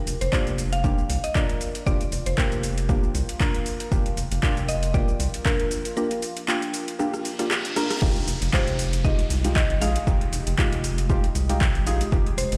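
A mallet-like synth pluck opens this smooth, moody deep house excerpt, its woody, round FM tone carrying a melody coloured by chorus and dub echo over a 117 BPM groove in F dorian with a 55% swing on the sixteenths. A rubbery square bass arrives almost at once with a hollow, bouncy, resonant filter pluck and sidechain pumping, together with a layered drum kit of metallic hats, handclaps, rim click, shaker and crash. An overdriven electronic kick joins at 0.3 seconds, and kit and kick are both treated with studio reverb. Soft, dark chord stabs with analog chorus, dub echo and pumping sit on Gm7/F, while a detuned, sustained ambient pad with a slow attack and long release hovers in the background. A drum fill at 7.0 seconds and a reverse cymbal with downlifter lead into the drop at 8.0 seconds, where the harmony moves to Fm9. The whole mix sounds as if played on a big sound system in a bare room, washed in large studio reverb and digital ambience.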